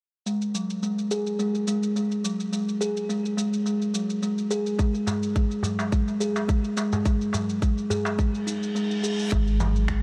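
Earthy and meditative, this organic downtempo piece, cut from a longer work, moves at 106 BPM with a light 16th-note swing, as a buzzing, woody kalimba rings out arpeggios through a low-pass filter sweep and digital delay over electronic shaker, congas and finger snaps, joined at 4.8 seconds by a tight, up-front electronic kick and a crisp, deep metal-shell darbuka played with hard hands, before a reverse cymbal rises into a round sine sub bass landing on G#1 at 9.3 seconds, all set in light reverb and digital ambience with a dark production.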